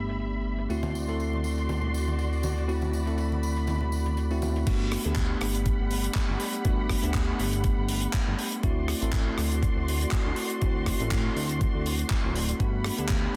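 Swung sixteenths at 121 BPM drive this sunny, feel-good nu-disco excerpt in G major: a tight, dry funk kit with hi-hat, handclaps and rim click plays throughout, while distant tambourine and congas with hard hands sit in from 0.7 to 4.6 seconds. At 4.7 seconds a drop brings in a knocking, tape-warm electronic kick under the glossy, chorused synth bass that has been playing since the start. A bell-like tine electric piano and muted, veiled strings with vibrato both carry filter sweeps through the opening, the strings pumping against the sidechain over chords moving between G, D7 and Gmaj7, all in a dense, heavily limited mix with a small room reverb.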